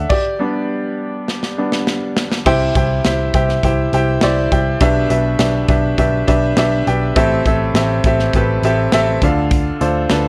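A straight 4/4 pulse at 102 BPM drives this uplifting, hopeful piano-driven pop passage in C major, cut from a longer piece. A bright upright piano sits up front with a brilliant, woody, natural tone and long sustain, carrying a solo passage over the opening 2.5 seconds while the drums play a fill from 1.3 s. A modern studio drum kit of crash, hi-hat, punchy kick and medium-tuned snare sounds airy and polished in an acoustic studio room. Beneath it, a vintage muted picked electric bass adds a dark, round, amped, foam-muted low end. The harmony opens on G, then shifts to C as the second section begins at 2.5 seconds, moving on through G6/B, Am7 and Dm. Light studio reverb and a worn, warbling old-cassette-tape character with pitch drift color the recording.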